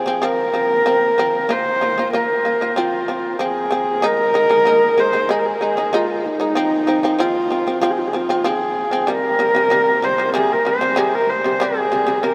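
A horsehead fiddle and a shamisen begin together in this solemn, windswept fragment of Mongolian folk music, cut from a longer piece and lasting 12.3 seconds at 95 BPM in a straight 4/4 in F minor. The bowed fiddle carries the melody between Eb4 and C5, its husky horsehair tone shaped by a soft attack, light vibrato and gliding portamento, sounding intimate and close with a smooth top. Beneath it, the fretless shamisen plays plectrum-plucked arpeggios from C3 to F4, bright, buzzing and percussive, a powerful acoustic presence that sits up front, though softer in level than the fiddle. A huge, wet ambient reverb with an 8.9-second decay is heard from further back in the room, behind the two up-front instruments. The harmony moves from F5 through Bb5 to Fm in the opening passage, then shifts at 4.0 seconds into a second section that passes through Ab5 and F5 before settling on C5.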